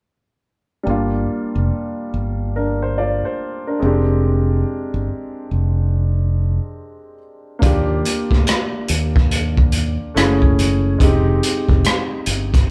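A growly, bright fingered electric bass sits up front in this soulful, smooth neo-soul R&B excerpt, moving over a swung 4/4 groove beside a warm grand piano that carries the chords from Gm7 through Fm69 and Ebmaj7 to a closing Fm9. At 7.6 seconds a crunchy breakbeat kit joins with hi-hat, rim click and a tight kick, its gritty, saturated tone and rolled-off top giving the drums a mid-forward weight. The band sounds like it's playing live in one large studio room, with moderate reverb.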